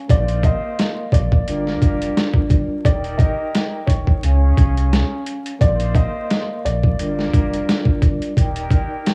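A gritty, overdriven sampler-style drum kit sits up front in this short boom-bap hip-hop cut at 87 BPM in Eb major, its thumpy kick, medium-tuned snare and hi-hat swung lightly on the 16ths beneath a round, deep sine sub bass. A woody, vintage upright piano carries the melody through cassette-tape grit and analog delay until 8.3 seconds, while a mellow vibraphone with soft mallets and fast motor vibrato rings out chords moving from Bbsus4 through Gm7 and Ebmaj7 to Db. A distant, roomy horn section adds loose octave-doubled stabs, and vinyl crackle with small-room ambience gives the whole a confident, homemade feel.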